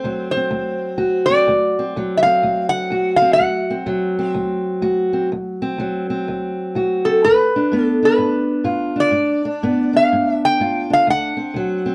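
A dark, small-room sound frames this swaggering, gritty fragment of acoustic country blues, taken from a longer piece, moving at 125 BPM in 4/4 with swung eighth notes in D mixolydian. A metal-body resonator guitar, played with slide and fingerpicks, carries the melody up front with a metallic, nasal bite, while a fingerpicked steel-string parlour guitar supplies a boxy accompaniment beneath it throughout. The harmony sits on D7, shifts to G7 at 7.2 seconds and returns to D7 at 11.1 seconds.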